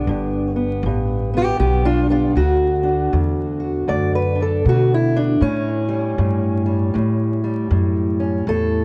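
Acoustic country blues with a rollicking, soulful mood at 79 BPM in a swung 4/4, where a boxy, parlour-style fingerpicked steel-string acoustic guitar with fresh strings and tape echo takes an up-front solo melody across the whole 8.8-second excerpt over a woody, thumpy pizzicato upright bass, moving through G7, D and A7 in a moderate studio room coloured by worn, warbling cassette tape, vinyl crackle and drifting pitch.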